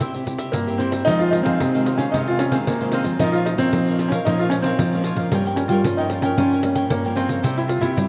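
A clear, polished grand piano carries the melody up front from 0.5 seconds, over a nostalgic, yearning samba and choro in F minor at 113 BPM. Beneath it, a crisp picked cavaquinho, a dark fingerpicked classical nylon-string guitar with audible finger squeak, and a jingly, close and dry pandeiro played with hard hands keep the accompaniment going, while a second nylon-string guitar with fresh strings takes the bass line from 1.1 seconds. The harmony moves through Fm7, Bbmadd9, Gm7b5 and C, all set in a vast, echoing cathedral space in this short cut from a longer piece.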